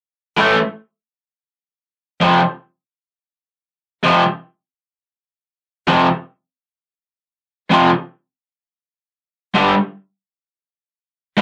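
A bright, overdriven electric guitar, picked and double-tracked, plays alone up front from 0.4 seconds in this menacing, raw rock fragment taken from a longer piece. It moves from A5 to F5 at 2.2 seconds and on to G5 at 9.5 seconds. A modest booth ambience and tube saturation lend the rough rehearsal-room sound its grit.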